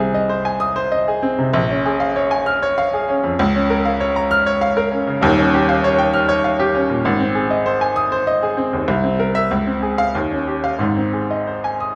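A glistening recital hall reverb surrounds this solo baby grand, whose up-front, brilliant tone stays crisp despite the room's lingering wash. The piece is a classical virtuoso piano study in triple metre, played with a free, rubato feel that gives it a sparkling and heroic character. The piano spans from Eb1 in the deep bass to F6 high in the treble, so the single instrument fills a broad register on its own. Its notes have a short, natural sustain, leaving the hall to carry the resonance. The harmony moves through rich chords such as Bbm7 and Eb9, passing through C7 and Dbmaj7 near 9 seconds before settling on Ab at 10.8 seconds. The passage is cut from a longer work and runs for 12 seconds.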